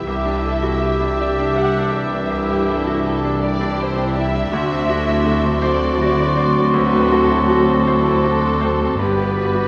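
Cinematic, emotional film score in a rubato 6/8 with a longing, bittersweet mood, where a veiled con sordino violin section carries a lush bowed melody over a bright, short-sustained grand piano and a dark muted viola section; a second background violin line, an airy close-miked hollow flute, a soft distant clarinet, a very quiet roomy oboe and mellow sustained French horn chords add gentle inner lines, while muted cello and double bass sections anchor the bass through a Cadd9 to D7 to G progression, all in a moderate scoring stage reverb in this brief cut from a longer piece.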